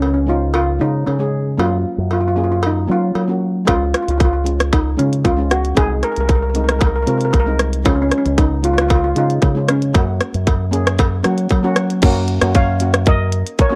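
A metallic double-seconds steel pan, struck with hard rubber sticks and miked close, carries the melody full and up front in this bouncy, sunny calypso excerpt. Beneath it, a mellow set of cello pans played softly with soft rubber sticks supplies the accompaniment, while a fingered electric bass through an envelope filter sits forward with a direct tone. A cowbell with a live-room ring keeps time from the start and drops out at 11.6 seconds. A glitchy electronic drum kit joins at 3.7 seconds, its tight kick, clicky hi-hat, rim click and crash cymbal given a tape-warm, produced edge. The harmony shifts into a short closing section at 12.0 seconds, and the whole piece has the dry, close sound of a 1970s studio.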